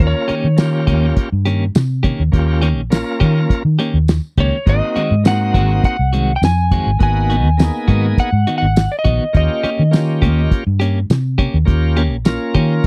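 A straight-eighth groove in 4/4 at 103 BPM drives this laid-back, soulful soul blues excerpt in Eb mixolydian, cut from a longer piece. Up front, a cloth-damped drum kit gives a thuddy, dark sound with a fat snare, tight kick, rolled-off top, hi-hat and tambourine, while a vintage muted fingered electric bass sounds round, punchy and amped under its foam mute. A bright tonewheel organ fills in with a full, shouting tone, lightly overdriven through a slow rotary speaker, and a clean, picked electric guitar adds compressed stabs colored by tremolo from 0.3 seconds. The melody belongs to an electric slide guitar, slightly broken-up and played with fingerpicks, singing in a high register from 0.1 to 10.5 seconds. The harmony moves from Eb7 to Ab7, then Abm7, and back to Eb7, all captured in a dry, close 1970s-style studio sound with little reverb.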